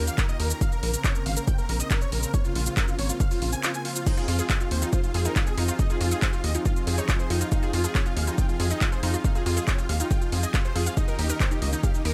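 Bittersweet and emotional, this uplifting trance excerpt in F minor drives along at 139 BPM in a straight 4/4, with a punchy analog kick up front and a drum machine supplying crash cymbal, handclaps, hi-hat and shaker, both re-recorded in a small room. A tight, mellow sequencer bass pumps beneath a huge, thick supersaw melody with vibrato and digital delay, while a silky analog string pad with ensemble chorus holds sustained chords in the background through Eb7, Bbmadd9 and Fm7. At 4.1 s a lush, bright unison pluck enters with delayed arpeggios, and the melody, pad, bass and pluck all carry sidechain pumping in a fairly dry mix.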